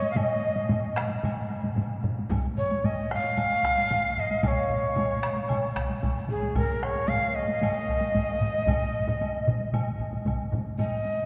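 Japanese traditional music for taiko drum ensemble, this ceremonial, driving passage moves at 113 BPM in a straight 4/4, cut from a longer piece and centred on an Eb suspended pentatonic scale. A breathy, bright shakuhachi carries the melody between Ab4 and F5, close-miked and up front, its bamboo tone marked by vibrato, a crisp attack and an audible chiff. Beneath it, several taiko ensemble parts drive the music: one struck with hard sticks sits close and dry, while others played with heavy sticks sound from a small room, one of them set in the background. A further taiko ensemble part with hard sticks, also in a small room, joins at 2.3 seconds. A woody woodblock sounds distant and in the background, as though from a large space. The whole is bathed in a wet cathedral reverb with a 4.6-second decay, giving the performance the resonance of a church or concert hall.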